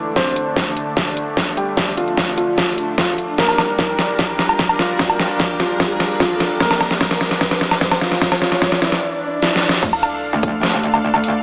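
A dark, mellow grand piano melody with tape echo opens this heavy, aggressive wobble dubstep excerpt in D minor at 149 BPM in half-time, over a lush, airy supersaw pad that pumps under sidechain and a low-pass filter sweep, while overdriven drums with a deep snare, woodblock, hi-hat and crash plus a punchy electronic kick build through fills, a background riser and a swell, until the drop at 9.8 seconds unleashes a metallic, distorted wobble bass on D2 with chorus, all set in a lush hall reverb with a small-speaker sound.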